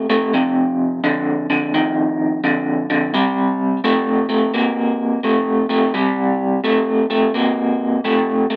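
Laid-back and soulful, this short blues fragment, cut from a longer piece, moves at an easy 86 BPM in 4/4 with a swung eighth-note feel. A lone electric guitar carries it from 0.0 to 8.6 seconds, played through a small old amp that gives it a warm, slightly broken-up, lo-fi character. The picked part sits up front and stays in a low register, between F2 and Bb3, colored by a tremolo effect. The harmony rests on F5 from 0.3 seconds before shifting to C5 at 3.1 seconds. A moderate studio reverb lends the guitar a modest sense of space around its gritty tone.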